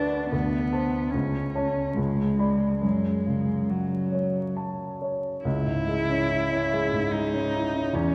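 Melancholic and elegiac, this romantic classical excerpt in F# minor drifts at 71 BPM in a rubato 3/4, with a warm, smooth, bowed cello singing the melody with vibrato up front while a clear, open baby grand piano supplies long-sustained accompaniment, the pair set in a 2.5-second concert hall reverb under a dark production touched by vinyl crackle, the harmony turning to C# minor at 5.4 seconds.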